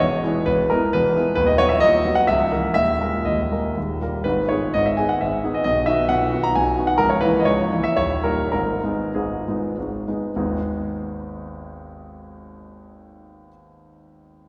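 A clear concert grand piano plays alone from 0.0 s, opening a romantic triple-time dance in G# minor with dotted rhythms and a capricious, nostalgic mood, its tempo pulled freely by rubato between 91 and 144 BPM. The piano sits up front with a deep bass and short sustain, spanning C#1 to A#5, and the harmony moves through E, B/D#, D#sus4 and D#7 before settling on G# minor as the playing slows from 6.3 s to 10.4 s. A new section begins at 10.4 s, and the whole short passage, cut from a longer piece, is bathed in a wet scoring-stage reverb.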